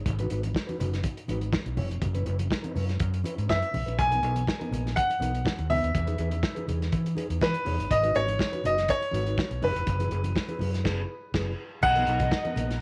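Disco in B major at 122 BPM, this danceable, glamorous cut from a longer piece rides an up-front overdriven fingered bass and a muffled, gritty soul drum kit with dark cymbals and a tight kick, while a mellow electric guitar with spring reverb and very quiet, bright congas fill out the groove over a G#m7, F#7sus4, Bmaj7 and Emaj7 progression. A clear, boxy grand piano takes the melody from 3.5 seconds, the band hits an accent from 10.8 to 11.8 seconds, and a lush, woody violin section enters at 11.8 seconds as the harmony lands on Bmaj7. The whole sits in a light small-room reverb with a lo-fi, saturated character on the drums.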